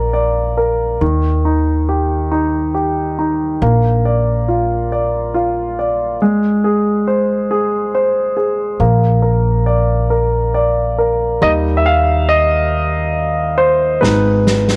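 A polished, up-front grand piano and a woody pizzicato upright bass open this swaying, heartfelt six-eight pop ballad in Eb major at a slow 46 BPM, with the piano stepping forward as a solo at 11.4 seconds before a distant, roomy snare fill with a rolled-off top arrives at 14.0 seconds over a closing Ab minor chord, all in a light studio reverb in this excerpt cut from a longer piece.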